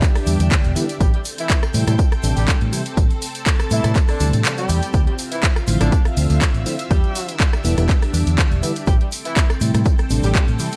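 Nostalgic and sensual, this filtered disco house excerpt rides a punchy, overdriven electronic kick and a house kit of bright hats, handclaps, rim click and tambourine pumping under sidechain, joined by a distant egg shaker, a round, foam-muted fingered electric bass, a detuned sawtooth polysynth comp coloured by phaser and cassette tape, a lush string machine with vintage 12-bit grit holding sustained chords from the start, and a mellow, octave-doubled horn section entering at 1.0 s through digital delay, moving through Em7, Am7 and Dm9 with a brief break at 4.4 s.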